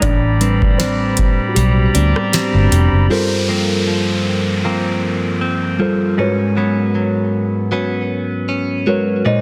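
Longing and moody, this slow contemporary R&B fragment at 78 BPM moves from Am11 through Gm11 to Abm11. Muted, felt-like synth keys with chorus carry a solo through the opening and play to the end, alongside picked, clean, direct-recorded electric guitar arpeggios with phaser and delay. For the first 3.1 seconds, a pipe organ's reedy oboe stop with baroque chiff holds sustained chords and a dark, foam-muted, round electric bass anchors the low end, while a booming analog drum machine with deep kick, crisp snare and metallic hats sits up front until 2.9 seconds, its kick falling silent partway through. After that, an electronic downlifter sounds beneath the keys and guitar in a dense, heavily limited mix with light reverb and digital ambience.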